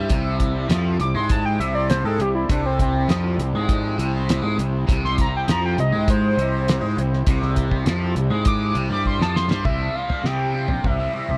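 Psychedelic rock at 101 BPM in C major, trippy and hypnotic, cut from a longer piece: a hollow, sawtooth-edged synth lead layered with a fifth solos through chorus and dub echo over a biting, double-tracked overdriven guitar riff with phaser and echo, a round, punchy fuzz bass up front, and a dry, cloth-damped thuddy kit with a fat snare, while a reedy pedal harmonium breathes sustained chords in the background until 9.6 seconds and a very quiet, swarming detuned drone hovers beneath, with a drum fill at 9.1 seconds leading into a new section at 9.7 seconds in an echo-heavy, nearly reverb-free mix.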